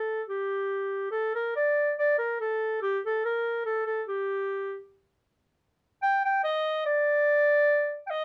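Japanese traditional chamber music, austere and calm, in a free rubato feel: a solo clarinet plays alone, up front, ranging from G4 to G5 in a classical style. Its tone is warm yet distant and roomy, set in light reverb and caught by close, detailed microphones across this 8.2-second fragment of a longer piece.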